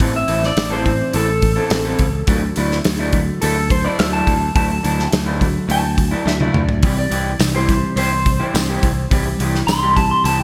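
A straight 4/4 pulse at 105 BPM from a loose, up-front indie drum kit with a tight kick and a drum fill at 6.3 seconds drives this cool, restless indie rock fragment over Am, Dadd9 and C, where a dark, slightly broken-up lead guitar through a small old amp plays a clean solo melody bathed in lush chorus, a second small-amp guitar picks a riff with subtle chorus and digital delay, a mellow, fingered, compressed guitar riffs in the background, a bright, growly picked bass holds the low end, and a jingly tambourine joins from 7.4 to 9.8 seconds, all set in a moderate hall reverb with bright 1980s-style digital production.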